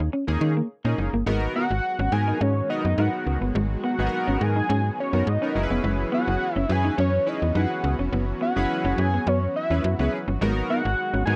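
Funk with a danceable feel and a dry, close 1970s studio sound, where a snappy, metallic slap-like FM bass and a dark, clean semi-hollow electric guitar riff bathed in lush chorus open together, a glossy chorused polysynth joins at 0.3 seconds, a thick, warbling unison pad settles in the background from 1.3 seconds, and a fat, mellow analog lead sits up front with the melody from 1.6 seconds, colored by chorus, phaser and slapback echo.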